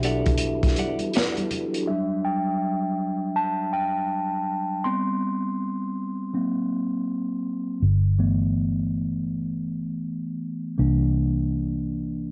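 A swung 16th-note groove at 81 BPM in 4/4 opens this soulful, introspective neo-soul passage in E minor, cut from a longer piece and heard through the soft, dulled top of a home cassette recording with light reverb and studio ambience. For the first 1.9 seconds the band plays together: a crunchy, saturated breakbeat kit with a tight kick and medium-tuned snare sits up front beside a dark, foam-muted fingered bass, while congas with soft hands and a thick skin join at 0.3 seconds and murmur in the background. Over this, a vibraphone with a slow motor vibrato rings briefly on a single E5 from a boxy small room, a clean, compressed semi-hollow guitar adds a second line, a very quiet, lightly overdriven tonewheel organ holds percussive chords through a slow rotary speaker with audible key click, and the mellow tine electric piano accompanies. From 1.9 seconds the electric piano, heard through its built-in speakers, takes a solo that carries the rest of the passage, alone at first, over Em11/F#, Gadd11, F# and G69. 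The round, punchy bass returns at 7.8 seconds to underpin the closing turn toward C9.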